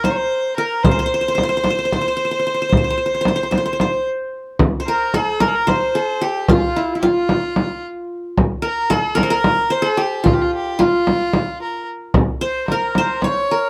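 Set in a straight 7/8 with eighth notes at 223 BPM, this soulful, hypnotic fragment of a Turkish makam ensemble piece is driven by a deep, large frame drum played with soft hands, its sound compressed and saturated. Up front, the qanun carries the melody between E4 and Db5, its fingerpicked triple strings giving a bright-edged attack. A single bowed violin traces a second line from F4 to Db5 with a clear tone and light vibrato. From 4.6 seconds the music settles into C makam hicaz, tuned to A4 = 439 Hz, and the drum drops out at 13.3 seconds, just before the strings close at 13.7 seconds. Close, detailed microphones and very little reverb keep every part present and intimate.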